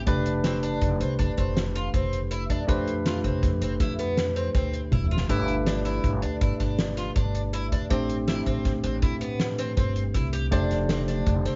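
A barky tine electric piano, lightly overdriven and up front, opens this progressive instrumental together with a woody, growly upright bass played pizzicato. The piece moves at 161 BPM in a straight 7/4, with a tense, driving mood, and the band is tuned to A4 = 444 Hz. A picked twelve-string acoustic guitar adds bright, octave-doubled arpeggios with a shimmering, lush chorus, while a soft-mallet drum kit works across hi-hat, fat snare, boomy kick and toms in a big room. A drum fill from 4.9 to 5.3 seconds leads the harmony from F to G, then on to Am and back to F. Light reverb surrounds the dark, thumpy bass and the boxy parlour guitar, and the top end stays below 7.6 kHz throughout this short cut from a longer piece.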